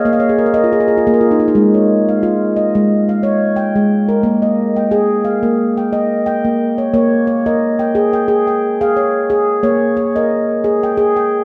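A solo handpan opens with a fill in the first 1.6 seconds, its stainless steel tone ringing out bright and up front under sharp finger strokes. This is meditative world music, hypnotic and gentle, moving at 89 BPM in 4/4 with a light swing on the sixteenths, and it sits in B-flat minor pentatonic. The handpan spans Ab3 to G5, and the harmony moves from Bbm through Ab5 and Bb5 before settling back on Bbm as the second section begins at 6.9 seconds. A concert hall reverb lingers around each note, giving the handpan a ringing halo inside a dark, warm production. The result feels like a gentle, meditative moment lifted from a longer piece, closing at 11.4 seconds.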